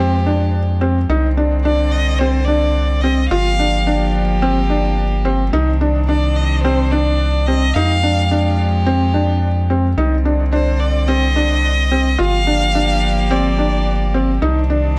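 From the first moment, a felt-muted upright piano with audible action noise repeats a soft riff through digital delay, a round, deep analog bass sits up front, a floating sul tasto string quartet holds sustained chords, and a rich, expressive violin sings a vibrato-laden melody with portamento and its own digital delay until 14.1 s, all in a hypnotic, intimate stretch of piano-and-strings electronica at 108 BPM in C minor that circles Fmadd9, Cmadd9 and Gm7 under light reverb, cut from a longer piece.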